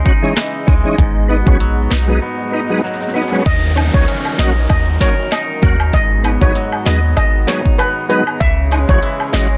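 A hypnotic, bouncy dancehall groove opens at once with a tonewheel organ comping through chorus vibrato and a fast rotary speaker, over a hollow, flute-like pad that pumps softly in the background. A twangy, clean electric guitar picks arpeggios while a deep, boomy 808-style bass with a fast attack sits up front beside an electronic afro-pop kit of deep kick, sharp snare, hi-hat, rim clicks, handclaps and crash. A break arrives at 2.2 seconds as a riser climbs in, leading to a new section at 3.5 seconds where a metallic, shimmering steel pan takes the melody with delay. Cabasa and woodblock join at 3.8 seconds, adding a saturated acoustic texture to the lightly swung rhythm as the chords move between minor sevenths and a minor add-nine. The mix is dry, dense and heavily limited, and this short piece is cut from a longer track.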